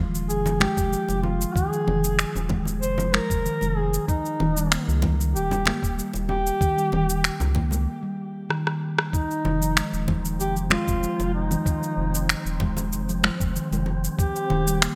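Bright, 1980s-style digital production with light reverb frames this mystical, hypnotic organic downtempo excerpt in 4/4, cut from a longer piece. A steel tongue drum played with soft rubber mallets rings out pure, meditative arpeggios through a low-pass filter and digital delay over a round, wave-folded analog bass. A gritty, thumpy electronic kick, up-front electronic cabasa, finger snaps, congas and rim click, and acoustic congas from a small room in the background carry the pulse, with a break at 7.9 seconds and a drum fill. A distant, roomy duduk sings the folk-style melody with vibrato and its own delay, and at 9.9 seconds a breathy, wind-like tuned noise texture with chorus drifts in behind it as the harmony moves from Fm7 and Eb7 to F7(no3).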